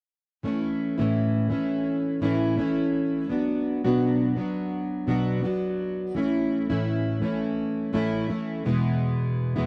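A gently swung 4/4 pulse carries this sunny, heartfelt pop excerpt, cut from a longer piece, where a fingerpicked, plugged-in steel-string acoustic guitar plays accompaniment from 0.4 to 9.7 seconds, double-tracked and sitting up front with the full-bodied ring of a jumbo body and fresh strings. The chords move from A to Bm, back to A and onto E, captured in a dry, close 1970s-style studio sound with modest booth ambience.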